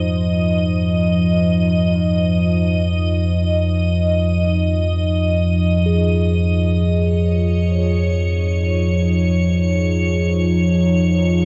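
Ominous and desolate, this dark ambient drone in F minor drifts in free time, cut from a longer piece, with a deep rumbling drone sitting up front under a moody, detuned analog pad with chorus as the harmony moves from Fm7 to Absus4/F at 6.8 seconds. Above them an icy, crystalline glass pad shimmers with chorus and shimmer reverb, while a metallic bronze singing bowl rings out slow-beating arpeggios with tape echo in the background. All four parts sound throughout the 11.4 seconds, bathed in a huge, wet reverb with a 7.2-second decay.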